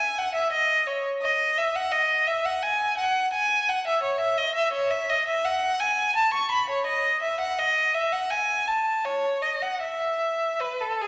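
Flowing with rubato and uneven beats at 84 BPM in 4/4, this serene, baroque-style classical suite movement in E major, an excerpt from a longer piece, features a single rich, bowed violin played up front alone with expressive vibrato and portamento, ranging from G#4 to C#6 and tuned to A4 = 442 Hz, set in a wet recital-hall reverb.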